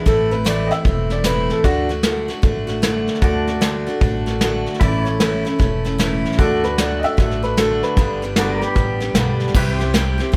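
A bright, full-bodied picked dreadnought acoustic guitar opens this easygoing, heartfelt honky-tonk excerpt at a swung 152 BPM, joined at once by a woody, thumpy gut-string upright bass, a roomy soft brush kit with bright cymbals and a tight kick, and two short brilliant upright-piano phrases, while a clean, compressed pedal steel enters at 3.2 seconds with sustained, fingerpicked slide chords and volume swells over a light reverb as the harmony moves from Am through D, A and G to C.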